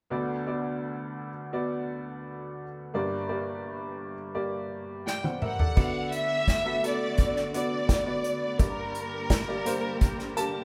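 A bright, woody upright piano opens this hopeful, warm piano-driven pop excerpt at 85 BPM in 4/4, its slightly detuned tone, long sustain and audible action noise sitting intimately up front over chords moving between D6 and Gm. At 5.1 seconds an airy acoustic drum kit played with bundle sticks enters with a fill, bringing a punchy kick, medium-tuned snare and dark cymbals, while a lush violin section takes the melody with expressive vibrato. From 5.8 seconds a smooth-topped, darker string section adds sustained chords in the background, and the whole band shares a moderate stone-room reverb, as if playing live together.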